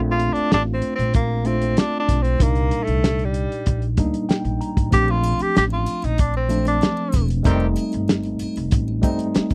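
This short cut from a longer piece opens straight into lush 1970s-style soul, smooth and warm, with a worn, lightly overdriven tine electric piano and a woody, growly upright bass sounding together from the start. A tenor saxophone takes the melody almost at once, up front and jazz-styled, its vibrato and scooped notes carried on a smooth top, while a dry, muffled soul drum kit with a tight kick and medium-tuned snare settles in beneath on hi-hat, kick and snare. The slightly out-of-tune electric piano slips in a brief fill before a shimmering triangle joins quietly in the background at 4.9 seconds. The harmony moves between rich ninth chords, landing on F9 as the saxophone finishes and a clear, vintage horn section with octave doubling punches a short stab at 7.5 seconds as a band accent begins. The recording is close and dry in a 1970s studio manner, with the drums' rolled-off top lending the whole a gently lo-fi character.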